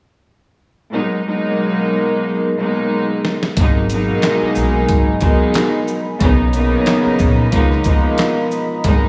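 Reedy, cassette-tinged bowed strings with light vibrato open this dark, gritty boom-bap hip-hop excerpt at 91 BPM in G# dorian, moving through G#m7, Bmaj9 and C#13, before a dusty, thumpy sampler-style drum kit of kick, snare, hi-hat, handclaps and shaker arrives at 3.2 s with a fill into the next section at 3.6 s, where a woody pizzicato upright bass and a deep, detuned analog pad with chorus join beneath a dreamy plate-reverb haze.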